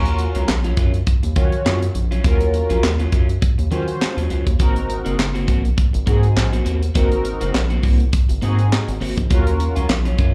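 A lightly swung sixteenth-note groove in 4/4 drives this funky, danceable early-eighties boogie funk cut, built on a tight, up-front acoustic kit with a high-tuned snare, hi-hat, kick and handclaps, and a rubbery, bouncy square-wave bass with a dark, resonant filter pluck. Over the Ebm9 to Ab9 vamp, a mellow, round synth brass with detuned sawtooth, vibrato, chorus, phaser and slapback echo plays the accompaniment until 9.9 s, while a bright, twangy electric guitar at the edge of break-up picks a compressed riff with subtle chorus and slapback echo. The whole short clip sounds like a live gig heard through the venue's PA, with small-room ambience and club reverb.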